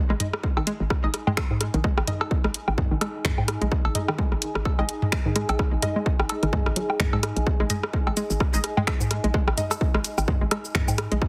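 An up-front, overdriven electronic kick punches through this clinical, cool minimal techno excerpt at 128 BPM in 4/4 with a swung sixteenth feel, alongside an overdriven house kit of finger snaps, hi-hat and shaker, and a booming, tape-tinged analog drum machine of cowbell, rim click, toms and woodblock soaked in dub echo. A hollow, knocking FM bass and a bouncy, detuned square pluck riff with chorus and delay pump against the kick, while a muted, deep dub chord stab drifts through phaser and echo until 9.7 s. A warbling, nostalgic lo-fi pad sits darkly beneath it all in light digital ambience, with the whole mix squeezed into a heavily compressed, radio-like sound.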